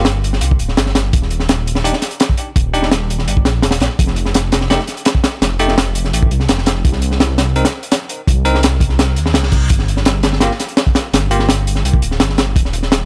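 A crunchy breakbeat kit drives this dark, raw drum and bass and jungle excerpt at 168 BPM in a straight 4/4, its saturated, gritty hits, punchy kick and high-tuned snare sitting up front in a small, dry room. Beneath it, a deep, rumbling detuned saw bass beats and sustains through the chords G5, Eb, F and Cm, while a bell-like tine electric piano places clean, bright stabs with dub echo until 11.5 seconds. A faint electronic reverse cymbal sounds in the background from 9.2 seconds, just before the harmony drops out at 9.7 seconds.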